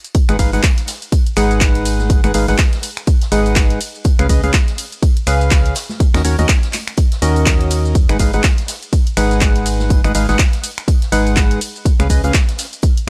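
Over a swung 4/4 groove, this energetic, soulful piano house excerpt layers a punchy, up-front electronic kick with a tape-warm analog drum machine of finger snaps, handclaps, hi-hat, ride cymbal and shaker, a very quiet big-band kit adding hi-hat, snare and tambourine, and faint, bright hand-struck tambourine and congas, while a hollow, chorused, tape-echoed organ stab riff and a dark, organ-like FM bass pump against the kick through a G#m7, C#7 and D#m7 progression in a dry, gritty small room.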